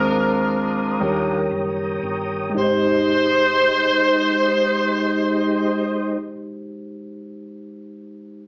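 A bright saxophone section carries the melody up front in this short cut from a slow gospel piece in 6/8, its jazz-style ensemble sound shaded with vibrato and set in Ab major at a crawling 36-45 BPM, counted in dotted quarters. Beside it, a mellow tine electric piano plays clean, direct accompaniment, ringing on alone after the other parts stop at 6.2 seconds and sounding until 8.4 seconds. A soft, flute-like tonewheel organ holds sustained chords beneath, colored by chorus vibrato and a slow rotary speaker. In the background, a round, dark hollow-body short-scale bass supplies the low end with an amped electric tone. The tempo slows through the opening 2.6 seconds as the harmony moves from Ab/Eb to Eb7, then settles on Abmaj7 for a second section, all within a moderate studio reverb and a small-speaker sound that give the jubilant, hopeful mood a boxy, intimate frame.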